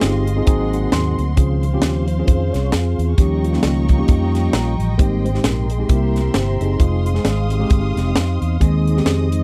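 Swung eighths at 133 BPM drive this uplifting, hopeful uptempo gospel clip in Ab major, where a tight funk drum kit with a high-tuned snare and a growly fingered electric bass sit up front beneath a soft, flute-like tonewheel organ solo turning through a slow rotary speaker with chorus vibrato, while a mellow tine electric piano adds fills at 0.7 and 4.3 seconds and a lush, woody bowed string section holds sustained chords high above, in a dry, close 1970s-style studio recording.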